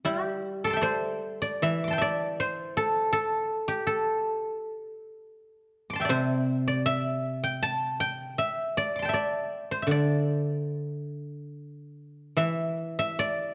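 Contemplative and full of longing, this short excerpt of traditional Chinese music is cut from a longer piece and features a solo guzheng. The instrument plays alone from 0.0 to 13.5 seconds in a free, rubato 4/4 that drifts between 69 and 82 BPM, set in an A yu mode with tuning at A4 = 439 Hz. Played with fingerpicks, the guzheng spans a range from C3 to D6, and its silvery, ringing tone sits up front in the mix. A moderate recital hall reverb with a 1.7-second decay surrounds the strings. The overall production is dark and warm.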